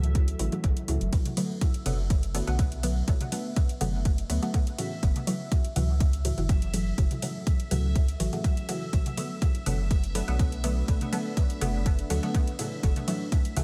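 An overdriven electronic kick sits up front in this cavernous, deep dub techno excerpt, its weighty thump layered and re-recorded in a large room, carrying a straight 4/4 pulse at 123 BPM from 0.1 seconds. A round, sine-like sub bass pumps beneath it, while a muted, warbling chord stab built from detuned sawtooth and square waves pops with a filter pluck, colored by chorus and phaser and trailed by dub echo. Far back in the mix, a moody, dark pad holds long chords with chorus, built-in reverb and sidechain pumping, moving from F#m7 to Bm7 and back to F#m7. A deep house kit adds metallic, overdriven hi-hat and ride cymbal, and from 1.3 seconds analog-flavored electronic toms and congas, overdriven and recorded in a small room, join in the background with dub echo. A quiet, resonant texture bubbles through random filter steps on a single high note, giving the otherwise dry, shadowy mix a restless shimmer.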